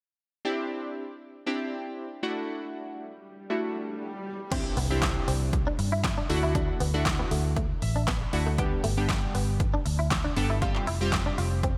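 Glossy, detuned retro synth keys with sidechain pumping and slapback echo open this euphoric dance-pop excerpt at 118 BPM, with a very quiet electronic swell rising from 3.0 s into an impact at 4.5 s, where an overdriven, up-front deep house drum kit with a punchy kick and fat snare and a twangy, clean electric guitar riff with ensemble chorus and slapback echo join in, followed at 4.8 s by a dark, foam-muted, sidechain-pumped fingered bass, before the synth keys add a fill at 7.6 s, all set in a lush hall reverb with a big arena sound.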